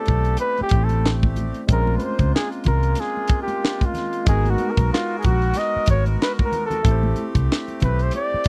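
A dry, close 1970s-style studio sound frames this sultry, soulful neo-soul R&B excerpt at 93 BPM in 4/4 with a swung sixteenth feel, where a warm flugelhorn with light vibrato and a smooth top carries the melody up front as a solo across the full 8.5 seconds. Beneath it, a bright, barky tine electric piano with phaser and a reedy accordion with slow beating hold the chords moving from Am9 through Bbm9 and G#m9 back to Am9. A dark, foam-muted fingered electric bass and a tight funk kit with a high-tuned snare, handclaps and hi-hat sit up front, while soft-handed, ringing congas stay in the background.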